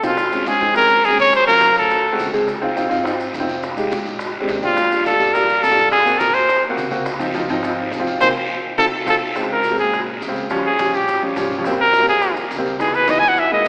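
A clear, close-miked trumpet with light vibrato leads this driving, sultry Afro-Cuban jazz passage, pausing between 2.3 and 4.6 seconds and then taking a solo from 9.4 seconds, with a drum fill and band accent just before it. Up front, a natural-sounding baby grand piano with short sustain plays accompaniment, while a woody pizzicato upright bass sits in the background. Distant round bongos, raspy guiro, grainy maracas and very quiet, bright, close congas fill out the percussion, all set in a wet concert hall reverb with an AM radio tone in this section of a longer piece.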